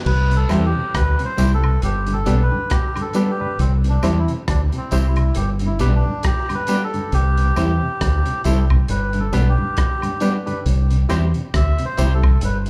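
A swung roots reggae groove from a gritty, saturated breakbeat drum kit and a round, punchy dub bass carries an uplifting melodica solo, breathy and nasal with tape echo, while a mellow tonewheel organ with slow rotary speaker, a slightly broken-up electric guitar with lush chorus, barky electric piano stabs with fast tremolo, and a dry tambourine and woodblock sit in the background, the performance heard through a club's PA in this live cut from a longer piece.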